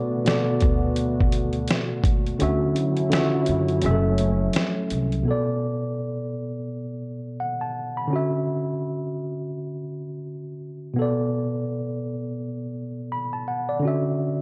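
Lo-fi hip hop at 84 BPM in B minor with a swung 16th feel, melancholic and reflective, built on a worn, slightly out-of-tune tine electric piano that sits up front with light overdrive and a low-pass filter. It is joined by a moody, detuned analog pad with chorus, a gritty, compressed sampler-style drum kit with a thumpy kick, and a woody pizzicato upright bass. The kick drops out at 2.4 seconds, and from 5.3 seconds the piano carries on alone over Bm7 and Dmaj9 in a dark, lightly reverberant mix.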